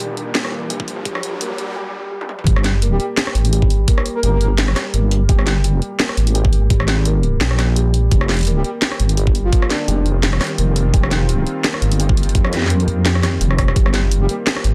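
Dark and heavy, this half-time drum and bass excerpt moves at 170 BPM in G phrygian with a lightly swung sixteenth feel, and is cut from a longer piece. It opens on a build-up where an electronic riser climbs over a filter sweep and a tense, string-like drone with built-in reverb and sidechain pumping sits in the background, while a soft, felt-muted upright piano plays mellow, intimate arpeggios through a digital delay. After a brief break and a drum fill, the drop lands at 2.5 seconds, driven by a knocking electronic kick and a layered kit with a cracking, soft-clipped snare, bright hats, rim clicks and toms. The kit sits up front, and both were re-recorded in a small room. Underneath, a deep, wobbling sawtooth-and-sine bass with chorus and tube saturation holds the low end. A breathy, flute-like synth lead drifts in for short phrases, colored by analog chorus, cassette tape and dub echo, while the drone returns at 9.4 seconds as the harmony shifts from Gm to F5 and back. 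The mix is dense and heavily limited, with a modern, digital ambience.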